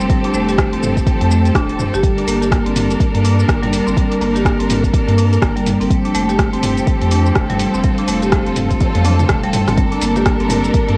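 Afro house at 124 BPM in G minor with a swung 16th-note feel, this earthy, driving excerpt sets woody, bright marimba arpeggios with tape echo over clear, bowed string chords and a round, dark analog bass, all three pumping against a deep electronic kick and a tape-saturated deep house kit of hi-hat, rim click, shaker and toms, whose fill at 8.8 seconds leads to a brief touch of very quiet, ringing congas at 9.8 seconds as the chords move from F7 through Gm and F back to Gm, all under light reverb with a homespun cassette character.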